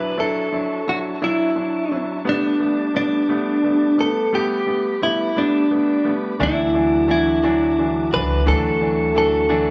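Romantic and tender, this short pop excerpt in a gentle 6/8 sways between Dadd9 and Gadd9 chords as a clean, up-front electric guitar carries the melody through lush chorus and tape echo, over a clear, polished baby grand piano and a soft, flute-like tonewheel organ with key click and a fast rotary speaker far in the background. At 6.4 seconds a second clean electric guitar adds quiet picked arpeggios and a woody pizzicato upright bass enters. The whole recording sits in a small, lightly reverberant room and is coloured by worn cassette tape with warbly pitch drift.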